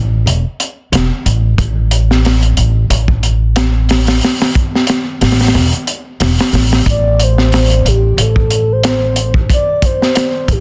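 A crunchy breakbeat drum kit sits up front in this brooding, melancholic trip hop excerpt, its high-tuned snare, tight kick and hi-hat sounding saturated and gritty with a rolled-off top. Moving at 91 BPM in 4/4 with a light swing on the sixteenths, the groove rests in A minor, entering at 0.3 seconds just after a woody, growly pizzicato upright bass that holds the low end from the very start. The harmony hovers on Esus4, falls away to a chordless stretch at 1.6 seconds, returns to Esus4, and settles onto A minor. At 6.9 seconds a pure, breathy sine lead arrives with a soft attack and sustained tones, its dark voice colored by chorus, vibrato and tape echo. The small room ambience keeps the parts close and intimate, while a dense, heavily limited modern master gives the whole a compact, pressed weight.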